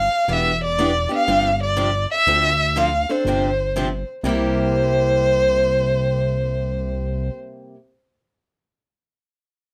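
A close, expressive violin carries the melody with vibrato and gliding portamento, bowed by one player up front in this playful, swinging excerpt of acoustic string swing. Beneath it, a fat, thick analog bass with a ring-modulated, filter-swept sawtooth edge holds the low end, while a bright, boxy parlour steel-string guitar enters at 0.3 s with picked chords moving from Em7 through G7sus4 and Dm9 to C7. The violin and bass stop at 7.3 s, leaving the guitar alone in a moderate studio ambience until 7.8 s.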